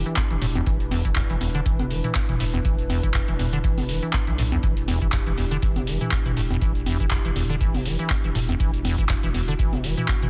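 Hypnotic and driving, this acid house excerpt runs at 121 BPM in 4/4 with a light 55% swing on the sixteenths, sitting in E minor on a single Em7 chord. A squelchy, hollow square-wave acid bass carries the riff with a resonant filter pluck, colored by tube saturation, analog chorus and digital delay, while a thick, saturated sine sub bass sits deep beneath it with sidechain pumping. A dark analog pad holds sustained chords, its moody tone shaped by a moving notch, slow attack and long release, with chorus and sidechain pumping. A booming analog drum machine with congas, handclaps, toms and metallic hi-hats comes in at 0.1 seconds, and the dry, deep electronic kick follows at 0.2 seconds, sitting highest in the mix, both carrying a tape-warm character. A grainy, bright egg shaker adds close acoustic texture far back in the mix, all set in digital ambience with a dense, heavily limited modern master.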